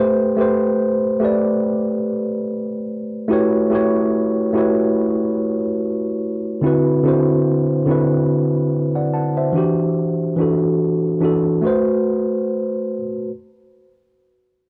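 A lightly swung 16th-note feel in 4/4 at 72 BPM carries this reflective, melancholic hip hop fragment in A dorian, cut from a longer piece. A mellow tine electric piano plays alone for the full 13.3 seconds, its worn, slightly out-of-tune tone sitting up front under a low-pass filter and cassette tape coloring as it moves through Am9, A13, D13, Em9 and Am69. Light reverb and the character of a home cassette recording add to the reflective, melancholic mood.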